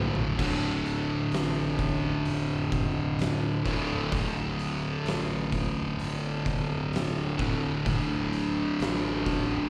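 A drum fill opens this short stoner and doom metal excerpt as the fuzz guitar and bass sound from the very start, leading at 0.4 seconds into a sludgy, ominous section in D minor at a crawling 64 BPM in straight 4/4. The fuzz guitar carries the riff between D2 and D3, distorted, double-tracked, compressed and sitting up front with a warm, picked tone, landing on a D5 chord at 0.4 seconds. Beneath it, a fuzz-laden picked electric bass growls in the depths from D1 to Bb1, overdriven with tube saturation and a bright, direct edge. An oversized, low-tuned acoustic drum kit of boomy kick, fat snare, toms, hi-hat and dark cymbals pounds along, its gritty, saturated sound set in a bright stone room. The whole performance comes across like a live gig heard through the venue's PA, with small room ambience and recital hall reverb, and it stops at about 9.7 seconds, cut from a longer piece.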